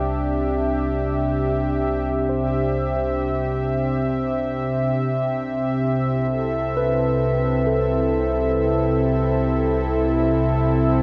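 A smooth, detuned sawtooth pad with chorus sits up front in this peaceful ambient excerpt at 67 BPM, holding sustained chords that move from Cadd9 to Am/C at 5.0 seconds over a deep, round sine sub bass. From 2.3 seconds, a mellow, clean tine electric piano fades in behind them with delayed arpeggios. A huge reverb with a 9.1-second tail and the warbling pitch drift of worn cassette tape give the short, cut-out passage a hazy glow.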